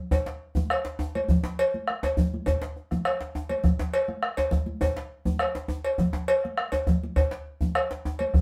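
Captured live in one room with a wet studio reverb, this short, powerful and earthy West African drum ensemble clip moves at a straight 102 BPM in 4/4, with a round, up-front bombo, a metallic cowbell and a medium-tuned djembe with metal rattles played by soft hands all sounding from the start, joined at 0.6 s by damped, high-tuned congas with a thick-skinned tone, also played by soft hands.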